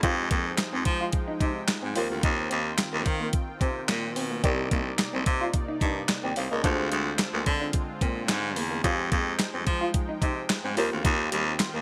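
Late-night and funky, this early-eighties boogie funk excerpt rides a crisp, thumpy 8-bit drum machine with handclaps up front while a bright baritone saxophone with vibrato carries the bass line, a worn concert grand piano and a slightly broken-up guitar riff through lush chorus sit in the background, and a brassy, nasal sawtooth pad holds sustained chords over Fm9, Eb69, Cm9 and Bb9/D changes in a bright digital production with light reverb.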